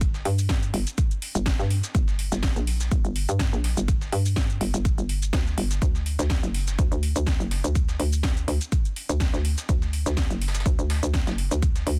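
A hollow, knocking FM bass and a punchy, up-front electronic kick open this aggressive, swaggering bass house cut at 124 BPM, the bass bouncy and mellow with tube saturation and sidechain pumping against a lightly swung 16th-note feel. Alongside them from the start, a house kit plays a cracking snare, metallic hats and shaker, while a gritty, pitched-up breakbeat sampler kit with a high-tuned snare and filtered hats sits in the background. The kick drops out at 11.7 seconds, and the whole is dry, dense and heavily limited, a short slice from a longer track.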